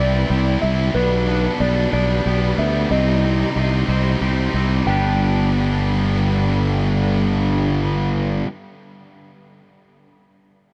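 Cinematic and euphoric, this short rock passage moves at a slow 61 BPM in 6/8 in G major, with a growly, fuzz-drenched fingered bass and a tight, double-tracked distorted guitar riff sitting up front. A dark, slide-played lap steel carries the melody through tape echo, while a very quiet twangy electric guitar spins clean arpeggios and a rich, bowed string section holds smooth sustained chords underneath. The harmony moves through Cadd9, G/B and Cm before landing on G as a new section opens at 4.9 seconds, all wrapped in a dark production with light reverb.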